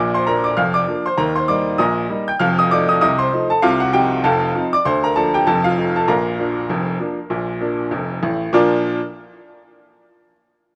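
Ragtime piano in Bb major at 98 BPM in 2/4, a jaunty, playful fragment cut from a longer piece, where a bright, woody upright piano tuned to A4 = 443 Hz plays solo and up front from 0.0 to 9.0 s across a range from F1 to G6, swinging its 16ths through a Bb, Eb and F7 progression with light reverb in a rough home demo mix.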